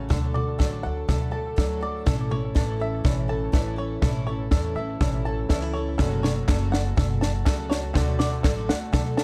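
Indie folk at 122 BPM in A major, uplifting and hopeful, in a short building excerpt where a dry, punchy cocktail drum kit plays a fill up front over a woody upright bass, shimmering octave-doubled twelve-string guitar, fingerpicked archtop guitar with finger squeak that stops at 6.0 seconds, and twangy banjo arpeggios through analog delay, as a bright upright piano joins in the background at 6.0 seconds and crisp group handclaps enter at 6.5 seconds, all in a dark production with light reverb.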